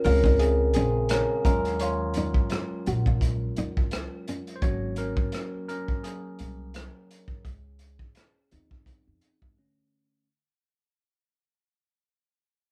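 A bright, barky tine electric piano takes the solo from the first moment, lightly overdriven through a combo amp with a phaser, sitting up front in this soulful, introspective neo-soul R&B excerpt cut from a longer piece. Beneath it, a crunchy breakbeat drum kit, gritty and saturated with a tight kick, rim click and hi-hat and a rolled-off top, sets a gently swung sixteenth-note feel. A woody, thumpy pizzicato upright bass on gut strings holds down the low end. A full-bodied, fingerpicked nylon-string guitar adds a second line with audible finger squeak, dropping out at 4.4 seconds. The harmony moves through rich extended chords from Bbm9 to Dbmaj9 in a lightly reverberant room where the band plays live together. The whole passage fades out, and at 9.6 seconds the drums and bass stop, leaving the electric piano alone over an Aadd11/D chord.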